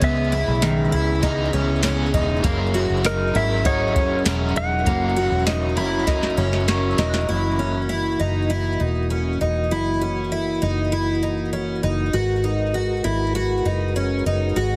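The shimmering, octave-doubled twelve-string acoustic guitar sits up front, its picked arpeggios carrying subtle chorus and digital delay throughout this floating, dreamy dream pop excerpt at 99 BPM in F# mixolydian. A clean, twangy lap steel carries the slide melody until 5.4 seconds, trailed by digital delay, while a crunchy overdriven guitar adds tremolo-shaded accompaniment until 7.8 seconds. A mellow, flute-like tonewheel organ holds sustained chords with chorus vibrato, audible key click and a stopped rotary speaker, and a dark, foam-muted electric bass gives a round low end under both sections. A soft vintage rhythm box with deep kick, tonal snare, metallic hats and tambourine plays a fill before dropping out at 7.3 seconds, where the harmony moves from C#m7 and F#7 to F#6 and later G#m9. Until 7.9 seconds, a delicate, bell-like celesta rings in the background with digital delay, and the whole mix has a heavily compressed radio sound with light reverb and digital ambience.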